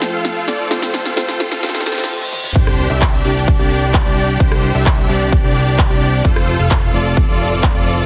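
A straight 4/4 pulse at 130 BPM drives this euphoric, anthemic slice of festival progressive house, cut from a longer piece and tuned to A4 = 435 Hz. It opens on a build-up, with the overdriven big-room kit rolling through drum fills of crisp hats, punchy snare, claps, rim clicks, toms, cabasa and crash, while a filter sweep, a faint riser and a reverse cymbal rise beneath. Huge, bright supersaw chords carry the up-front riff through the whole clip with cassette-tape colour, tape echo and sidechain pumping, backed by a clear, bowed symphonic string ensemble with light vibrato, and a dark grand piano that sits in the background only until 2.6 seconds. At that point the drop lands with an impact, bringing in a punchy, layered, overdriven electronic kick and a fat, saturated analog bass with a wave-folded, detuned sawtooth edge, the bass pumping under the chords. The harmony moves from F to Csus2 at the drop and back to F at 6.2 seconds. 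A light reverb surrounds the mix, which is heavily compressed and high-pass filtered into a loud, radio-like sound.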